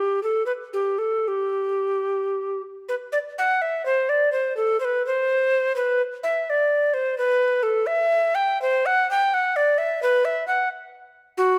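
A baroque-style classical fantasia for unaccompanied recorder, this brief excerpt cut from a longer piece moves in a flowing, radiant mood in G major. The tenor recorder plays solo throughout the 11.6 seconds, ranging from F#4 to G5 with a woody, airy tone, vibrato and a crisp attack that carries a distinct chiff at the start of notes. Set in 6/8 with a rubato feel, the pulse hovers around 71-89 BPM counted in dotted quarters, giving the line a lilting, unhurried sway. A short opening phrase gives way at 2.9 seconds to a longer second section that carries the music to the end. The instrument sits up front in a recital hall whose moderate reverb, lasting about 1.5 seconds, adds a gentle glow around each phrase.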